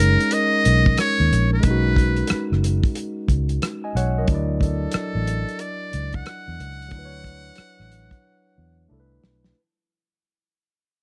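This R&B and neo-soul excerpt has a sensual, warm mood and a swung sixteenth-note feel, and it fades out across its full length. A trumpet with a metal mute carries the melody up front with a buzzy, thin tone, light vibrato, soft attacks and scooped notes in a close-miked jazz style, stopping at 8.9 seconds. Underneath, a barky tine electric piano plays bright, lightly overdriven accompaniment through a combo amp, moving from Bmaj13 to Dmaj9 before landing on Cmaj13. A vintage fingered electric bass sits up front with a dark, round, foam-muted and punchy amped sound. The soul drum kit is dry, lo-fi and muffled, with a fat snare, tight kick, hi-hat and rim click, plus a drum fill from 8.2 seconds. A small room reverb gives the whole mix a close, snug space.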